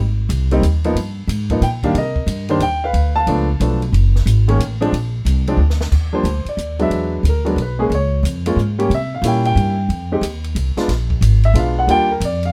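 A brisk swing in 3/4 at 181 BPM drives this playful, relaxed jazz piano trio cut from a longer piece. The upright bass opens the passage and sits up front with a thumpy, woody pizzicato tone. The compact cocktail kit follows at 0.3 seconds, playing dry and natural on ride, hi-hat, kick, snare and crash, with dark cymbals, a high-tuned snare and a tight kick set lower in the mix. The upright piano carries the melody with a smooth, vintage voice and short sustain, and a brief drum fill at 5.6 seconds leads into its solo from 5.9 seconds to the close. Harmonies move through rich colors such as Abadd9, Bm9b5 and C7b9 before settling on Ebmaj7, all heard in an intimate space with little reverb.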